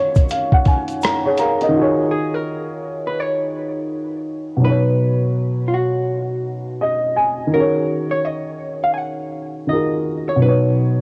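A swung lo-fi hip hop groove opens with a dark, woody upright piano playing tape-worn, filtered fills over minor-ninth and eleventh chords. It is joined at 0.2 seconds by a muffled, thumpy sampler-style kit of kick, hi-hat and rim click and a grainy tube shaker, both of which drop out by 1.7 seconds. At 2.1 seconds a clean, picked hollow-body jazz guitar melody colored by analog delay enters, for a hazy, nostalgic mood in a light, home-recorded cassette sound.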